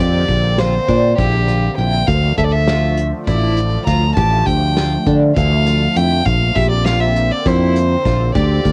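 Progressive instrumental band music in 7/8 at 201 BPM counted in eighths, this intricate, tense excerpt moves from Bbadd9 to Dm and back, with a clear, floating bowed violin carrying the melody up front over a growly, direct fretless electric bass. In the background, a picked twelve-string acoustic guitar shimmers with octave-doubled arpeggios, and a detuned sawtooth analog pad swirls through phaser and chorus with slow attack and long release. An unplugged drum kit enters at 0.3 s, bringing a punchy kick, medium-tuned snare, hi-hat and bundle sticks, all captured dry as a home cassette recording.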